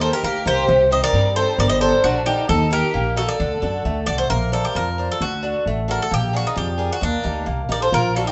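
Set in a driving 2/4 at 133 BPM with a straight feel, this short excerpt from a longer Greek folk piece carries a dramatic urgency for a bouzouki band. The bouzouki holds the melody up front across the whole 8.3 seconds, its picked double strings metallic and brilliant, with some courses doubled at the octave. A single close violin adds a second line with soft-attack bowing, vibrato and expressive portamento; it drops out at 4.0 seconds and returns at 7.0 seconds. Underneath, a boxy picked acoustic guitar supplies swing-style accompaniment, while a pizzicato upright bass on gut strings sits up front with a woody, thumpy, dark tone. The harmony moves from Eb through Cm, Gm and D, then shifts at 4.3 seconds to Bbadd9, D and Bb7 before landing back on Eb. The band sounds as if playing live together in one room, wrapped in wet studio reverb, with a mellow top end.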